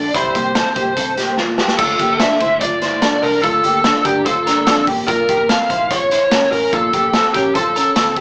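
A small-speaker sound with a moderate studio reverb frames this nostalgic, bright jangly indie pop excerpt at 146 BPM in 4/4, moving from C7 to Dm and then Bbmadd9. Up front, a dark, overdriven lead guitar through a small cranked amp carries the melody, while a slightly broken-up electric guitar through a small old amp plays compressed arpeggios with ensemble chorus. A round, foam-muted fingered bass sits in the background beneath a raw, gritty garage drum kit with a boomy kick, dark cymbals and a pumping room, which enters at 0.1 seconds and plays a fill from 1.4 to 1.8 seconds.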